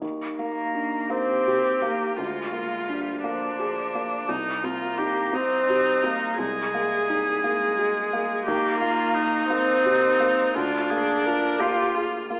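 Neoclassical piano and strings in a hopeful, intimate mood, this fragment of a longer piece moves in a rubato 6/8, with a felt-muted upright piano giving mellow, thick-felt accompaniment through chords such as Ebmaj7, Cm7 and Abadd9/C. A con sordino cello enters at 0.4 seconds with a veiled second line, shaded by light vibrato and portamento, and a single muted viola joins at 1.1 seconds with dark, soft-attack bowing. A moderate church-like reverb surrounds the ensemble, and a telephone-style tone colours the whole recording.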